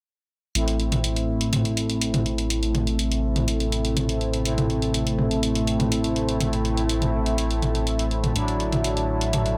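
Hypnotic and melancholic, this melodic techno excerpt moves at 123 BPM in a straight 4/4 in A dorian, cut from a longer piece. From 0.6 seconds a punchy analog drum machine sits up front with hi-hat and toms, re-recorded in a small room, while a fat, detuned sawtooth bass holds a low A with a fast attack and its own filter sweep. Up front, a bold, brassy analog synth plays sustained stabs colored by chorus, vibrato and delay. Behind them, a deep, moody pad with a sub octave and slow attack sustains dark chords under a filter sweep, and at 2.0 seconds an evolving analog drone with pulse-width modulation joins in the background. The harmony rests on A minor before shifting to Dadd9 over A at 8.4 seconds, all set in a light reverb and digital ambience.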